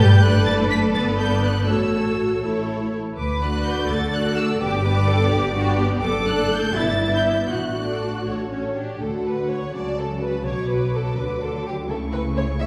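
A quick classical-period movement for string orchestra in 6/8 with rubato, this graceful, cheerful excerpt sets a lush, distant violin melody over a smooth second violin line, expressive, soft-attacked violas with portamento, rich cellos and a woody, up-front double bass section, the whole ensemble bathed in a wet scoring-stage reverb heard from further back in the room.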